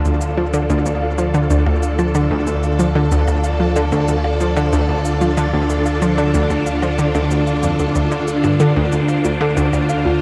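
Ambient, sequencer-driven space music at 93 BPM in 4/4 with a straight feel, this cosmic, expansive excerpt stays on a D minor chord throughout its roughly 10 seconds. A bright, swirling string machine holds sustained chords up front, its vintage sawtooth tone spread by ensemble chorus and a phaser. Up front alongside it, a detuned analog pluck with a fast attack and short decay plays a riff in the low register through chorus and tape echo. Further back, a soft, full-bodied pluck sits in the background with gentle arpeggios, also coloured by chorus and tape echo, while a deep sine sub bass sustains a single D. Faint cabasa and electronic percussion blips with tape echo drift behind it all, and a long shimmer reverb gives the dark production its vast, floating space.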